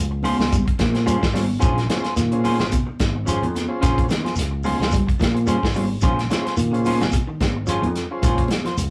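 Hypnotic and defiant, this short afrobeat fragment sits on a single Bbm9 chord with a lightly swung sixteenth-note feel, driven by an up-front soul drum kit with a tight kick, medium-tuned snare, hi-hat and a rolled-off top, beneath a dark, round fingered electric bass. Two clean semi-hollow electric guitars share the groove: one plays picked stabs in the background, while the other plays dark, fingered arpeggios lower down. Grainy shekere and bright, high-tuned congas sit in the background, and a vintage overdriven combo organ with light vibrato joins at 0.9 s, all captured in a rough rehearsal-room recording with warm saturation and a small-room reverb.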